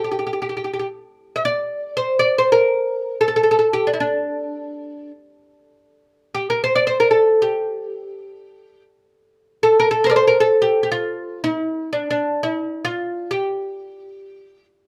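In free time, this soulful, melancholic Arabic excerpt in D maqam bayati features a solo oud, plucked with a plectrum, whose woody, fretless double-string voice sits up front in light reverb, ranging from D4 up to an E5 lowered by 50 cents across two statements of the same section from 0.0 to 14.7 seconds.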